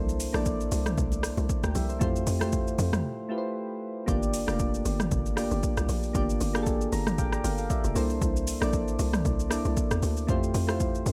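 Bathed in digital ambience, this deep, hypnotic amapiano excerpt sets soft, round electric-piano-like synth keys with chorus up front over a hollow, bouncy log drum bass and a punchy, overdriven deep house kit of kick, metallic hi-hats, rim click, shaker and toms, while very quiet, close and dry congas play only from 0.3 to 3.0 seconds, just before a break at 3.0 seconds and a synth keys fill at 6.7 seconds.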